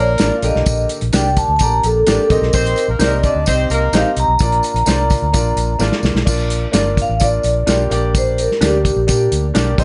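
A ringing, close-miked vibraphone played with soft mallets carries the melody of this danceable 1960s-style soul track and takes a solo from 6.3 seconds after a drum fill, over a round, foam-muted fingered electric bass, a clear baby grand piano with audible action noise, a mellow, compressed electric guitar adding background stabs with subtle chorus, a tight-kicked soul drum kit with dark cymbals and a jingly tambourine, while a warm jazz-style horn section plays a second line until 4.1 seconds, all set in a lightly reverberant studio.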